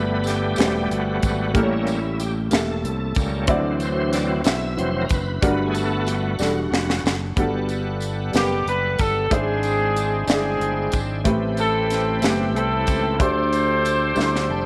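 Slow gospel in 6/8 at 62 BPM in G major, reverent and uplifting, this excerpt opens with the bright tonewheel organ taking a solo over sustained chords, its shouting, lightly overdriven tone turning through a slow rotary speaker with chorus vibrato and audible key click. Beneath it, an intimate baby grand piano with natural short sustain and audible action noise plays accompaniment, while a growly, punchy fingered electric bass sits up front in the low register. A crisp fusion drum kit enters at 0.3 s, airy and polished, with a high-tuned snare, punchy kick and hi-hat, and a jingly tambourine sounds distant in the background. After a drum fill leads into the second section at 7.4 s, a mellow horn section takes the melody from 8.4 s, vintage and jazz-styled with light vibrato, up front in the mix. The harmony moves through rich extended chords such as Gmaj9, A7b9, E7alt/G# and Am9, settling on D7sus4, and the piece closes on fills from drums, piano and organ, all set in a moderate echo chamber reverb.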